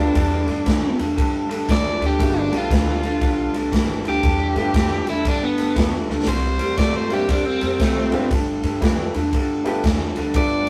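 Rough and tube-saturated, this rehearsal-room recording carries a light reverb and catches a swaggering, rollicking electric blues shuffle partway through a longer piece. An overdriven electric guitar takes a bright, compressed, picked solo up front for the whole passage, while a second electric guitar, played through a small old amp, sits equally forward with a slightly broken-up, lo-fi riff in its lower register. Beneath them, a pizzicato upright bass with steel strings gives a dark, growly bottom, and a clear upright piano adds natural accompaniment from the background. A swinging big-band drum kit enters at 0.2 seconds with a punchy kick, medium-tuned snare and ride cymbal, sounding airy and polished in a hall, and it plays a fill at 6.0 seconds. The harmony moves from G9 to Cadd9 at 6.3 seconds before returning to G9, keeping the shuffle swinging.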